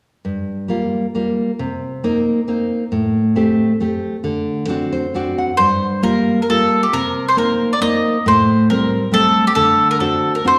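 Set in a reverberant recital hall heard from further back in the room, this passionate, romantic Italian folk serenade in 3/4 opens with a full-bodied, deep classical nylon-string guitar fingerpicking a Gm7–Cm7–Am7–D7 progression and adding a fill at 4.7 seconds, before a woody, double-strung picked mandolin enters up front with the melody at 5.6 seconds and carries it to the cut at 10.6 seconds.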